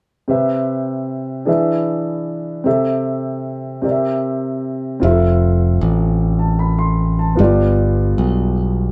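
A moderate studio ambience captures a band playing live in one room on this hopeful, reverent slow gospel passage in 6/8, where a warm, deep-bottomed concert grand piano sits up front with accompaniment moving from Cmaj7 through E7 and Fmaj7 to G7, and a bright, punchy picked electric bass joins with a direct, forward presence at 5.0 s.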